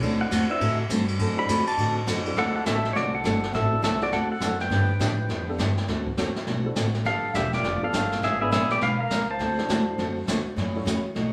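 Country western swing with a playful, down-home feel, cut from a longer piece, where a clean, compressed pedal steel guitar sits up front, played with fingerpicks and slide and shaped by volume swells, taking a solo from its entrance at 0.2 seconds through 2.4 seconds before carrying the melody onward. Beneath it, a bright picked dreadnought acoustic guitar with audible finger squeak, a woody, thumpy pizzicato upright bass on gut strings, and a brushed jazz kit with dark cymbals and a boomy kick keep the swing going, while a mellow upright piano sits in the background. The band sounds like it is playing live in one room with moderate studio reverb, moving through chords such as D9, G9 and G#dim7.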